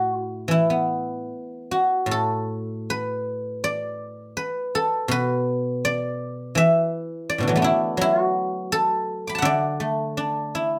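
A solo guzheng, played with fingerpicks, opens this brief 10.8-second excerpt of Chinese traditional music and carries it alone, its silvery, ringing tone sitting up front in a moderate studio reverb. The rubato phrasing gives the music a flowing, pastoral mood as the acoustic strings range from deep low notes up to bright high ones.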